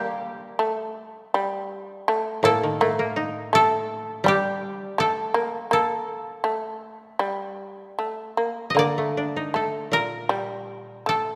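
A mellow, woody koto carries the melody in the middle register, played with fingerpicks and sitting close and up front in this still, austere fragment of Japanese traditional chamber music. Beneath it, a bright shamisen plays a second line in a lower range, its plectrum-plucked, fretless tone percussive and buzzing. A second koto, warm and fingerpicked, supplies the accompaniment across a broad span from low to middle register. All three parts sound together for the full 11.4 seconds, set in the G hirajoshi scale and moving in a rubato 4/4 at roughly 75-84 BPM. The instruments themselves sound dry and near, while a moderate concert hall reverb with a 2.4-second decay adds space around them, and the passage is cut from a longer piece.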